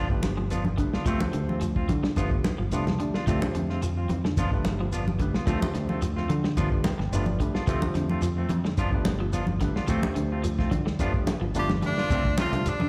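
Afrobeat at 109 BPM in D dorian, cut from a longer piece and caught live through a venue's PA with recital hall reverb, grooves hypnotically and intensely on a swung sixteenth feel over alternating G7 and Dm7 chords, as a round, punchy fingered bass and a dry, muffled soul drum kit with a tight kick anchor thick-skinned, low-tuned congas and a grainy shekere in the background, while a twangy, slightly broken-up guitar picks chorus-tinged arpeggios, a clean, bright guitar adds stabs, and a barky tine electric piano with phaser comps and fills at 2.4 and 6.6 seconds, before an edgy tenor saxophone with light vibrato steps up front at 11.6 seconds.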